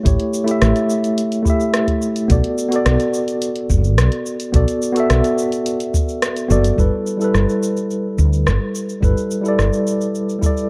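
Relaxed and warm, this sunset chillout excerpt in straight 4/4 pairs a mellow, up-front tine electric piano with delay and a round, woody fretless bass touched by subtle chorus, while a deep house kit of dark hi-hat, rim click and shaker plays beside an overdriven analog kick that drops out from 6.2 to 6.8 seconds before the harmony moves to G69, the whole mix sitting in plate reverb and the warbly pitch drift of worn cassette tape.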